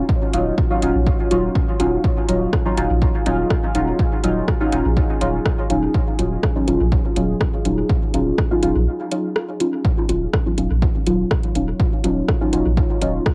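Meditative and nocturnal, this dub techno excerpt moves at 123 BPM in Eb minor, resting on a single Ebm9 chord as a warbling, detuned chord stab with chorus, phaser and dub echo pumps up front against a moody sawtooth pad held in the background. A punchy analog kick and a layered deep house kit with metallic, overdriven hats and rim clicks sit in small room ambience with cassette grit, while a round, soft sub bass pumps beneath. A break arrives at 8.9 seconds, and from 9.8 seconds a filter sweep runs over the stab.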